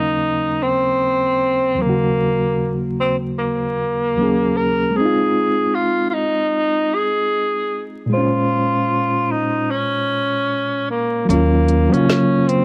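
Swung sixteenths at 76 BPM in 4/4 give this hazy, nostalgic lo-fi hip hop fragment, cut from a longer piece, a lazy, loping pulse in Eb dorian. A breathy tenor saxophone carries the melody from the start, its whispered subtone, soft attack, scooped notes and vibrato sitting up front under a low-pass filter and plate reverb for an intimate, vintage jazz feel. Beside it, an overdriven reed electric piano plays the accompaniment through a combo amp, gritty and reedy with a fast tremolo and its own low-pass filter, moving through Ebm7, Fm7 and Bbm9. At 11.3 seconds the harmony returns to Ebm7 as a deep house drum kit slips in with a woody snare and smooth hi-hats, while a plucked upright bass adds a single woody Eb from 11.3 to 11.9 seconds. The whole piece sits in a small room and wears the patina of worn cassette tape, with vinyl crackle and warbly pitch drift.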